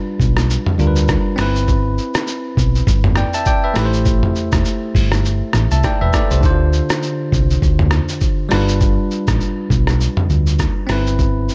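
Smooth and mellow, this afrobeats excerpt moves at 101 BPM in 4/4 with a swung sixteenth-note feel, its dark production kept dry and close. A bell-like, bright tine electric piano opens alone at 0.0 s, clean and up front, cycling through G7, Cmaj7/G, Am7 and Dm7 before returning to G7. At 0.2 s a round, punchy hollow-body short-scale bass enters low and amped, alongside a compressed, pitched-down sampler-style kit of thumpy kick, hi-hat, rim click, shaker and toms that sounds muffled and tape-warm, as if re-recorded in a small room.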